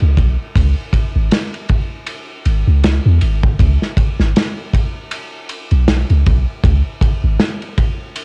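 A deep, round 808-style bass and an acoustic drum kit of punchy kick, snare and ride, roughened by 12-bit sampler grit and cassette tape, drive this excerpt from a hypnotic, smoky trip hop piece in C# minor at 79 BPM with a light 16th-note swing, heard close and dry on a home cassette recording, and the bass drops out at 7.4 seconds while the drums carry on to 8.2 seconds.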